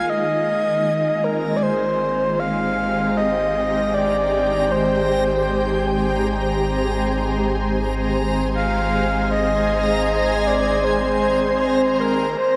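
In a straight, unhurried 4/4, this peaceful ambient fragment floats on a single Abmaj7 chord, with a breathy, flute-like synth lead carrying the melody up front over a shimmering, detuned pad of sustained chords. A round, deep analog bass and a reversed, dreamy texture in the background both fade in from 0.1 to 12.4 seconds. The lead wears chorus, vibrato and a diffuse delay, and the whole piece sits in a huge, wet reverb with a long tail.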